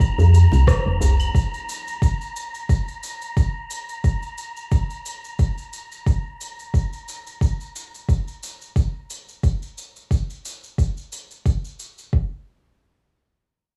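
A rough home-demo mix with small-room ambience carries this mystical, meditative organic downtempo piece, where a very quiet, smooth, detuned sawtooth pad with chorus and a woody, round FM bass with sidechain pumping sound an Ebadd9/F chord until 1.3 seconds beside a tight, cracking, saturated djembe, while an up-front, deep, layered electronic kick, a shaker, rim click and claves re-recorded in a large room, and a breathy, wind-like noise texture with built-in reverb that stops at 6.8 seconds run on from the start.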